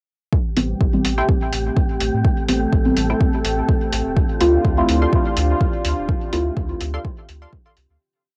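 Cavernous and meditative, this short dub techno piece sets an overdriven, punchy four-on-the-floor kick and muffled, pitched-down closed hats under a round sub bass, deep detuned chord stabs drenched in chorus, phaser, 12-bit grit and dub echo, muted filter-plucked stabs higher up, a moody sawtooth pad and a breathy, wind-like held note, all but the kick and hats pumping against the beat before a fade-out from 5.4 seconds on this cassette home recording.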